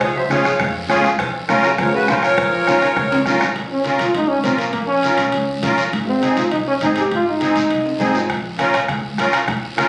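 Captured on a phone in the room, this short cut from a longer cumbia carries a moderate studio reverb and a faint mains hum. It moves at a fiery, danceable 202 BPM in 4/4 with a straight feel in B-flat minor, cycling through D-flat, B-flat minor and A-flat chords. A sweet, reedy accordion with light tremolo tuning sits up front with the melody until 3.2 s, while a shimmering musette accordion carries the accompaniment. A clear, vintage trombone plays a second line from the start and takes a solo from 3.6 s, supported by a woody, growly pizzicato upright bass. The percussion mixes ringing cowbell and timbales, a raspy guiro and very quiet, distant low-tuned congas, with a soft-beatered bombo in the background that drops out and returns at 8.3 s, and drum fills mark the turns.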